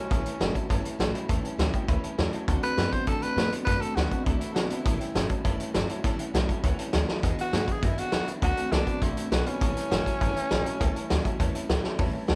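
Upbeat and rollicking, this 202 BPM rockabilly excerpt in A mixolydian rides an A7, D7 and E7 progression as a raspy, growling tenor saxophone blows solo phrases over a thumpy pizzicato upright bass, a gritty, saturated vintage drum kit with drum fills at 7.1 and 11.8 seconds, a slightly broken-up electric guitar riff through a small old amp with spring reverb, a full-bodied picked dreadnought acoustic guitar and a detuned, jangly honky-tonk upright piano tucked in the background, all captured live in one lightly reverberant room.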